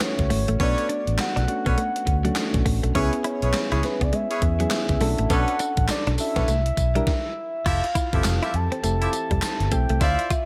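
Up-front, overdriven 80s drum machine beats with a thumpy kick and gated-reverb snare drive this slick, confident new jack swing excerpt at 102 BPM in B dorian from the start, alongside mellow electric-piano-like synth keys with chorus and tremolo, a full-bodied octave-layered synth lead melody with phaser and vibrato, and a clean direct guitar riff in the background. They are joined by a dark, foam-muted fingered bass from 0.2 seconds and tight jazz-style horn stabs from 0.6 seconds, all in light digital ambience, before a brief stop at 7.1 seconds leads into a shift toward Fmaj9.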